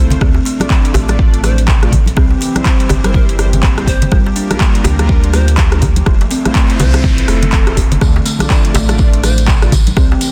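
An overdriven, deep electronic kick sits up front in this driving, spiritual afro house excerpt with a swung groove, joined by a layered deep house kit of handclaps, rim clicks and metallic hats, while dry congas and a tight, cracking djembe play softly in the background. A round sub bass pumps beneath a buzzing, woody kalimba playing arpeggios through digital delay, mellow detuned synth brass stabs carrying chorus and cassette-tape colour, and a very quiet, warbling vintage analog pad holding sustained chords over a Dm, C, Gm7, Fmaj7 progression. A breathy, reedy bamboo pan flute melody enters at 1.4 seconds, a noise sweep emerges from the background at 6.3 seconds, and a jingly tambourine joins at 8.0 seconds, all within a dense, heavily limited modern mix with studio reverb.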